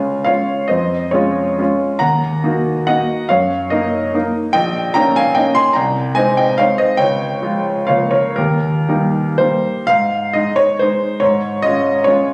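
Dotted rhythms drive this romantic classical dance in 3/4, its pulse flexing with rubato between 112 and 154 BPM. A solo concert grand piano carries the whole fragment, sounding clear and intimate, with audible action noise, deep bass and a natural, up-front presence. The harmony opens on Db and moves through Ebm and Eb7 before settling into Ab major from 4.6 seconds, giving the graceful, rustic character a gentle lilt. A new section begins at 9.9 seconds on Ab and closes on Db over Ab, where the fragment is cut from a longer piece at 12.3 seconds. The piano sits in a wet recital hall with a 1.4-second decay, captured on a phone within the room, which lends the sound an informal closeness.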